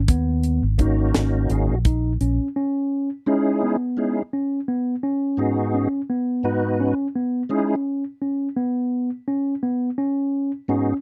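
Tense and intricate, this short progressive instrumental passage, cut from a longer piece, moves in 7/8 at 170 BPM counted in eighths with a straight feel. A growly fingered electric bass and a tight funk drum kit, with a high-tuned snare and a tight kick alongside the hi-hat, drive the opening before both drop out at 2.4 seconds. A mellow tine electric piano plays arpeggios in a narrow middle register from the start through to the end. A clear tonewheel organ enters at 0.8 seconds as accompaniment, colored by chorus vibrato, audible key click and a slow rotary speaker. The harmony rests over a G# bass, moving from Bmaj7/G# through C#madd9/G#, G#madd11 and C#5/G# before returning to G#madd11. Every part sits up front in a dry, close 1970s-style studio sound with little reverb.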